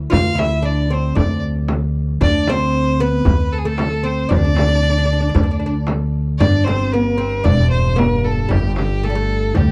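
A growly, up-front pizzicato upright bass with steel strings anchors this hypnotic, longing Arabic maqam ensemble piece, cut from a longer performance. A single bowed violin sings a smooth, distant melody with vibrato, while a woody, plectrum-plucked fretless oud with double strings carries a second line beneath it. A crisp metal-shell darbuka played with hard hands sits in the background beside a deep, vintage frame drum. At 6.4 s a pure, floating bowed double bass drone enters softly sul tasto, all in a dry, close 1970s-style studio sound with a small room reverb.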